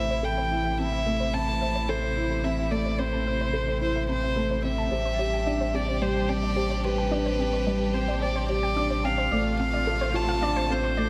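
Piano and strings electronica in A minor at 109 BPM, this moving, hypnotic passage is cut from a longer piece and builds for its full 11.1 seconds. A single violin carries the melody up front, its tone intimate with light vibrato, a soft attack and an airy, sul tasto bow. Beneath it, a felt-muted upright piano plays a dark, boxy riff with audible action noise, while a round sine sub bass holds a deep A1. A lush, clear studio string section sustains chords through a low-pass filter that sweeps across the passage, and a warbly, dusty lo-fi pluck with subtle chorus and tape echo spins detuned arpeggios in the background under its own filter sweep. The harmony moves from Am to Csus2/A at 4.9 seconds and Dm7/A at 9.3 seconds, all set in a small room with moderate echo-chamber reverb.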